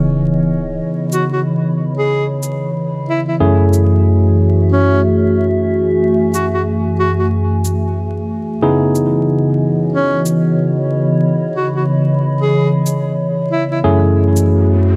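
Vinyl crackle and a lush hall reverb frame this funky, swaggering glitch hop fragment, where two warbling, nostalgic tape-like pads hold detuned chords and a higher mellow texture beneath a barky, up-front tine electric piano stabbing through vintage 12-bit sampler grit and a low-pass filter, while a dark tenor saxophone with vibrato and tape echo carries the melody from 1.1 s alongside an overdriven electronic shaker, and an electronic sub drop opens the passage before a riser arrives at 14.4 s.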